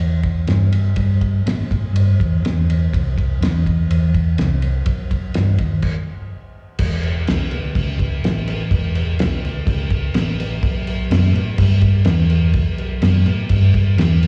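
Rowdy and raw, this 125 BPM garage rock excerpt in straight 4/4 pairs a round, punchy, up-front hollow-body short-scale electric bass, fingered between E1 and A2, with a cloth-damped, thuddy drum kit whose fat snare, tight kick and dark crash and ride cymbals carry a slapback echo, all heard like a live gig through the venue's PA captured on cassette tape with light reverb, and a full stop from 5.8 to 6.8 seconds leading into the second section.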